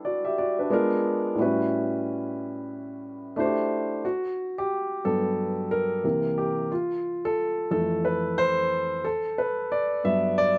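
Dry and close, with almost nothing of a room around it, this short excerpt captures a dark concert grand piano playing alone, its mellow tone and deep bass set up front. The R&B performance has a relaxed, soulful feel, with a gentle swing on the sixteenths and lush extended chords such as G6, A13 and Gmaj9. From 4.0 seconds the piano takes a solo through to the close at 10.6 seconds.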